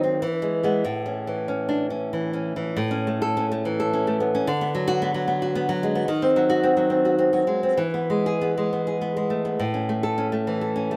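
A fingerpicked nylon-string guitar opens this short romantic piece for solo classical guitar, its bright, fresh-stringed tone sitting up front. The playing moves in a lilting three-beat metre with a free, rubato feel, ranging from low bass notes up into the middle register. After a brief opening phrase, a second section begins at 2.8 s, and the harmony travels from E to A, through Bm/D and D#m6, before settling back through E to A. A tape echo trails the guitar, and small finger squeaks give the performance an intimate, hands-on presence. Set in a light reverb, the music feels sunny and nostalgic, a brief passage cut from a longer work.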